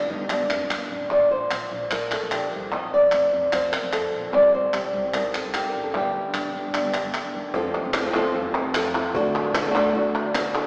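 A boxy flamenco guitar, fingerpicked with audible finger squeak, sits up front in a wet church reverb heard through a small-speaker sound, on this dramatic, passionate flamenco excerpt at 149 BPM in 4/4. Crisp, saturated palmas hand claps, also up front, join at 0.3 seconds over a woody, thumpy pizzicato upright bass with gut strings, while the chords move from Gmadd9 through Bbadd9, F and Cm to G5. At 7.5 seconds a snappy cajon with snares enters very quietly as the harmony shifts from F to D.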